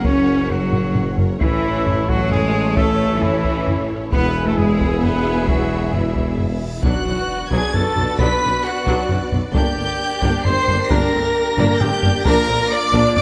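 A moderate scoring-stage reverb frames this relentless, epic orchestral film-score excerpt in 3/4, where a warm, expressive violin section carries the melody over a softer second violin line, a very quiet, intense viola accompaniment, and background strings holding sustained chords with portamento, while dark French horns add their own sustained chords. A clear, roomy trumpet punctuates with stabs as close, focused cellos, distant double basses and a mellow tuba anchor the bass beneath dry, heavy taiko drums, which play fills at 0.7 and 11.6 seconds. A huge, bright reverse cymbal and impact mark the shift into the second section at 6.8 seconds, where a hollow, airy flute joins with a second line in the background.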